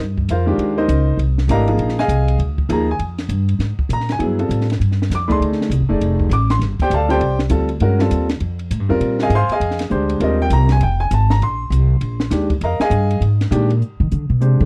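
A woody, growly pizzicato upright bass opens this searching, intense modal jazz excerpt at a brisk 200 BPM swing, joined almost at once by a compact cocktail drum kit with dark cymbals, a high-tuned snare and a punchy kick, and then a clear upright piano whose boxy tone, long sustain and audible action noise sit up front. Harmony drifts between suspended chords, from Bb9sus4 to G9sus4 and back, before settling on Gsus4 at 13.8 seconds. The dry, close 1970s-style studio sound and small room ambience keep the trio intimate.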